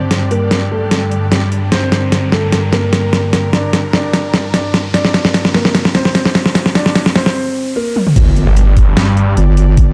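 A half-time 4/4 pulse at 149 BPM drives this aggressive, chaotic stretch of heavy wobble dubstep in G minor, where an overdriven dubstep drum kit with a deep snare, bright hats, crash and toms fills across a long build-up while a background riser climbs and a lush, bowed string section holds pumping, low-pass filtered chords beneath an intimate concert grand piano melody with audible action noise and delay. After a short break at 7.4 seconds, the drop hits at 8.2 seconds with an impact, a knocking electronic kick and a mellow, chorused square-and-sine wobble bass on G1, joined at 8.5 seconds by a snarling, detuned sawtooth bass whose moving notch and distortion growl up front. The dark production sits in light digital ambience and is cut from a longer piece.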